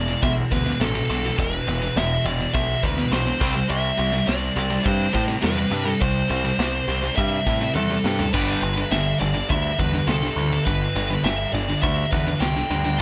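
A dark, high-gain lead guitar sings its melody over two distorted rhythm guitars, one bright and the other sludgy and overdriven, both riffing in the background, while a punchy, growling picked bass sits up front, all from the very first moment of this heavy, aggressive metal excerpt. A polished, airy studio kit joins at 0.2 seconds with a tight kick, medium-tuned snare, toms and crash cymbal, playing a drum fill at 7.8 seconds as the chords move from E5 to C and then G. The mix is dry, with little reverb.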